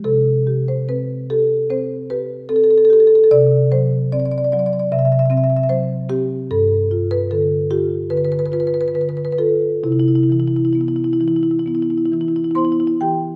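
A solo marimba played with medium mallets opens at once, its padauk bars giving a woody, up-front sound that fills this brief excerpt from a longer contemporary classical piece. The mood is playful and warm, set in C major at around 74 BPM in 4/4, though the beats are uneven and the phrasing moves with a free, rubato feel. The harmony passes from C5 to D9/C at 3.3 seconds, then to G7 at 6.5 seconds, and settles on Cmaj7 at 9.9 seconds. The marimba spans a range from G2 up to C6 across the full 13.4 seconds. A wet recital hall reverb surrounds the instrument, lending the notes a lingering bloom in the room.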